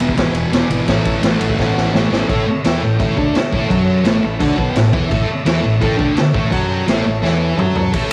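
A thick, double-tracked fuzz guitar riff, a raw small-room drum kit with a high-tuned snare and boomy kick, a round, dark overdriven bass tucked in the background, and a buzzy vintage combo organ holding sustained chords with light vibrato and lush chorus all start together in this raw, swaggering garage rock excerpt. The drums sit up front with a gritty, saturated, rolled-off top, and they break into fills at 1.6 and 7.2 seconds, while the organ adds a fill of its own at 4.0 seconds. A cassette-tape haze, light reverb and studio ambience give it the feel of a home recording.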